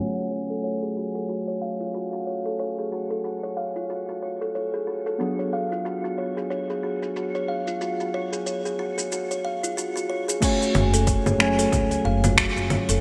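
Mystical and earthy, this organic downtempo excerpt moves with a lightly swung sixteenth-note feel and a lush, bright 1980s-style digital sheen bathed in a long hall reverb. Muted, felt-like synth keys with a soft, dark chorus-and-delay tone and sidechain pumping carry the harmony, while an up-front, close-miked kalimba plays hollow, ringing arpeggios with a woody thumb pluck. A filter sweep moves across both the keys and the kalimba through the first 10.4 seconds as the chords shift from F#madd9 to G#m7b5 and back. A deep house kit of congas, crash cymbal, finger snaps, metallic hi-hat and shaker sits forward in the mix. At 10.4 seconds a deep, layered electronic kick drum enters, sharing the kit's overdrive and studio reverb, and at 10.8 seconds a pizzicato upright bass with steel strings adds a low, pumping foundation.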